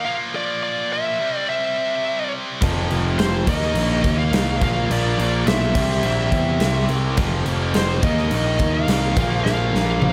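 A fuzzy, overdriven electric bass sits up front in this heavy, driving hard rock clip, joining at 2.6 seconds alongside an acoustic drum kit with a punchy kick, bright cymbals, crash, toms and a medium-tuned snare. From the opening, a dark, distorted high-gain lead guitar carries the melody over a heavy high-gain rhythm guitar, and at 2.6 seconds two more overdriven guitars, one biting and double-tracked, enter to thicken the background riff as the chords cycle through Bb5, C, F5 and Eb5. A drum fill at 9.5 seconds closes the passage, all set in light reverb and small room ambience.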